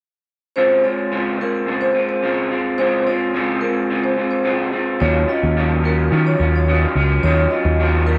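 Dreamy and sunny, this short indie and bedroom pop excerpt sets a mellow soft-mallet vibraphone with slow motor vibrato, lush chorus and slapback echo over a dark, slightly broken-up lo-fi electric guitar through a small old amp with its own chorus and warbly pitch drift, both moving from Dbmaj7 to Ebm9 when a round, punchy picked electric bass enters up front at 5.0 seconds, all inside a moderate plate reverb.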